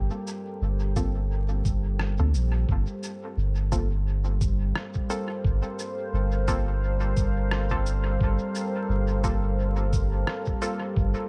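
Ambient dub in G minor at 87 BPM with a swung sixteenth feel, this meditative, spacious fragment of a longer piece opens on a Gm11 chord held by a deep, dark detuned sawtooth pad with chorus and its own reverb, over a round, soft sub bass sitting up front. Muffled, pitched-down electronic cabasa and rim click enter at 0.3 seconds, carried on dub echo, and at 1.0 seconds a thumpy, tape-warm kick joins in the background along with a muted, mellow filtered chord stab that has chorus and dub echo. The mix is dry apart from its heavy echo, with a bed of vinyl crackle beneath the parts.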